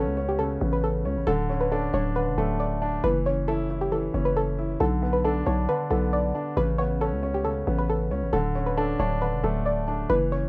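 Lightly reverberant and rough like a home demo, this brooding, menacing trap cut moves with a half-time feel over a cycle of Aadd9, D5 and F#m7 chords that turns to Bm at 4.8 seconds. A soft, round pluck carries the melody through chorus and delay, its detuned, filtered tone tinged with a noise layer and a sub octave. Beneath it, a dark, mellow baby grand piano sits up front in the accompaniment while a growling, buzzy 808-style bass with a fast attack and decaying tail anchors the low end throughout.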